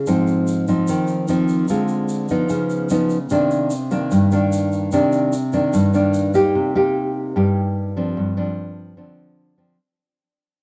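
Bossa nova in C minor at 148 BPM, this wistful, smooth fragment rests on an up-front, fingerpicked classical nylon-string guitar whose dark tone and finger squeaks carry chords such as Dm7b5, Db9 and Cm9. A grainy, bright egg shaker sits distant in a large room until 6.5 seconds, when the guitar moves on alone through Cm7 to G7sus4 as the sound fades out by 9.8 seconds. A moderate plate reverb gives the dark, warm production a long tail.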